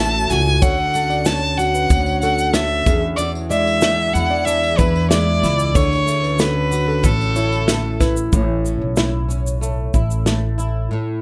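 A bowed violin with a focused vibrato tone carries the melody up front from the very start of this carefree, sunny acoustic pop excerpt, over a bright, boxy double-tracked flamenco guitar with audible finger squeak, a full-bodied fingerpicked steel-string acoustic guitar arpeggiating in the background, and a woody, growly pizzicato upright bass. A natural country drum kit with punchy kick, snare and shaker comes in alongside a jingly, very quiet tambourine, while a glassy, ethereal FM pad with slow attack and ensemble chorus warbles beneath, holding sustained chords. The violin stops at 8.0 seconds, leaving the flamenco guitar, bass and drums for the final seconds, with the guitar ringing last until 11.2 seconds.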